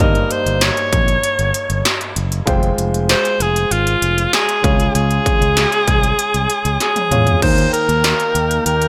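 A straight 4/4 pulse at 97 BPM is driven by an industrial drum kit: a distorted kick, clanging snare and crisp hi-hats sit up front with overdrive, crash cymbal and toms add weight, and a fill arrives at 6.8 seconds. This short cut from a longer 1980s-style pop piece feels romantic and nostalgic as the harmony moves from Eb/G through Fmadd9 and Db before landing on Eb. A punchy alto saxophone carries the melody as a forceful solo with vibrato and a smooth top, trailed by delay. Beneath it, a concert grand piano with deep bass and long sustain supplies the accompaniment, while a fingered electric bass sounds direct. At 7.4 seconds, as the music opens into a new section, a soft-attack sawtooth pad enters in the background, detuned and thickened with chorus and a moving notch. The mix has a bright digital sheen set in a moderate plate reverb.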